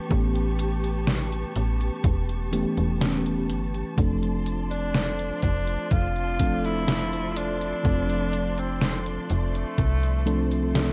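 Vaporwave at a slow 62 BPM in F lydian, this dreamy, nostalgic fragment from a longer piece sets a mellow, round FM electric piano, soaked in analog chorus, cassette tape and tape echo, against rich, bowed studio strings holding sustained chords, while a snappy, metallic FM bass sits up front with a detuned 8-bit drum machine of cabasa, hi-hat and snare and a thumpy electronic kick. At 4.7 seconds a clear tenor saxophone enters with a vibrato-laden pop-style melody carried on tape echo. The echo-heavy mix has a light reverb and a cassette haze, with the harmony moving from A9 to F6.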